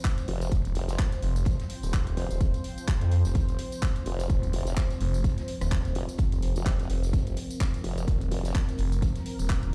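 A punchy, layered electronic kick drives this bouncy, aggressive bass house excerpt, joined by a house kit of handclaps, hi-hat, rim click and tambourine in a swinging sixteenth-note feel, with a very quiet, dark acoustic garage kit of hi-hat and snare underneath. Two up-front basses carry the weight: a wobbling formant-sweep bass with chorus and tube saturation plays from 0.3 to 8.5 seconds, and a thick, swirling detuned saw bass with phaser and overdrive enters at 0.5 seconds, both with sidechain pumping. Above them an evolving, bright sweeping pad holds sustained chords with chorus and its own sidechain pumping, and the track sounds as if played through a big sound system in a bare room.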